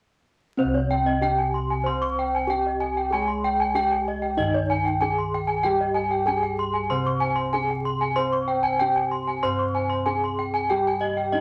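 A steady, straight pulse in four carries this short, hypnotic and brilliant stretch of Balinese gamelan, cut from a longer piece. Bronze metallophones fill every layer: a middle-register melody struck with a wooden mallet shimmers from paired tuning, and beneath it a lower accompaniment rings bright and mid-forward under a horn mallet. Two high arpeggio lines glitter on top. One is airy and up front, the louder of the pair, while the other, pitched slightly apart, sounds close, dry and full, and drops out at 11.0 seconds. Bossed gongs struck with padded beaters supply a round, mellow, softly beating bass that spans a broad range. A small, wet room gives the ensemble a brief ring, and a bed of vinyl crackle sits prominently under the whole performance.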